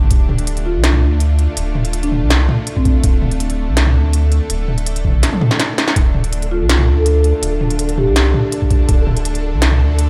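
Dark and cinematic, this half-time drum and bass cut in D minor moves at 164 BPM, built on a deep, saturated sub bass and a tense, string-like bowed drone that pumps against the beat under its own reverb. An up-front industrial kit with a clanging snare and crisp hats runs throughout, joined by a gritty, thumpy electronic kick, with a drum fill at 5.2 seconds. A woody marimba melody with delay sits in the background, and from 6.3 seconds a flickering, grainy texture shimmers behind it, the whole piece sounding as if played on a big system in a bare room.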